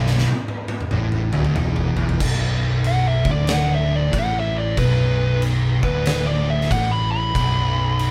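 A swung 93 BPM groove in 4/4 drives this hypnotic, ominous stoner and doom metal excerpt in B minor, opening on a drum fill from an oversized low-tuned acoustic kit with a punchy kick, fat snare, dark cymbals and a gritty, pumping stone-room sound. Two dark, picked fuzz guitars hold a low riff in the background over an amped, punchy fingered electric bass with overdrive, all captured as a band playing live in one room with moderate reverb. At 2.9 seconds a picked fuzz lead guitar steps up front with a solo in a higher register that runs to the end of the cut.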